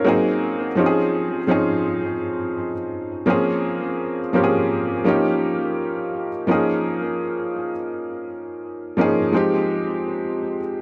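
R&B piece at 84 BPM with a longing, late-night mood, in which a solo felt-muted upright piano, soft, mellow and intimate with a thin felt tone up front, moves through lush chords from Ab9 and Dbmaj9 to Db6 and Fm9 with a tape echo, set in a moderate lush hall reverb, in this short excerpt from a longer piece.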